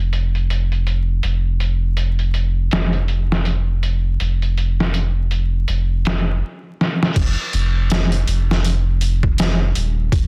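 Hypnotic and cinematic, this trip hop fragment moves at 81 BPM in 4/4 with a 16th-note swing, anchored by a deep, round sine sub bass, sustained between Eb1 and F1 and thickened with tube saturation. A gritty, pitched-down, sampler-style kit of thumpy kick, medium-tuned snare, hi-hat and crash cymbal sits up front, with every piece low-pass filtered, compressed and tape-warm. A drum fill at 6.8 seconds leads into a new section at 7.2 seconds, all within a dense, heavily limited master steeped in digital ambience and vinyl crackle.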